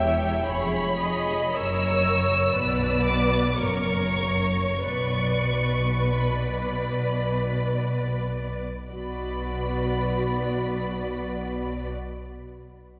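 A lush, vibrato-rich violin section carries the melody up front in this melancholic, elegiac slow romantic movement for string orchestra in B minor, moving in a rubato 3/4 at 42-64 BPM and slowing down through the first 8.9 seconds, while a second violin line with soft attack sits close beneath, dark, woody violas fill in the accompaniment, and expressive cellos and rich, smooth double basses anchor the bass from a distance, inside the long, wet reverb of a church.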